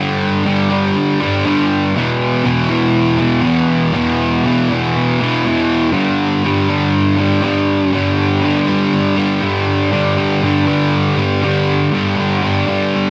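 A picked, distorted fuzz guitar plays alone and up front in this dreamy, blissful rock fragment, double-tracked and compressed with subtle chorus and a cassette tape effect, moving from G5 to E5 and back to G5 at 5.9 seconds before a new section arrives at 9.9 seconds, all within the moderate booth ambience of a home cassette recording.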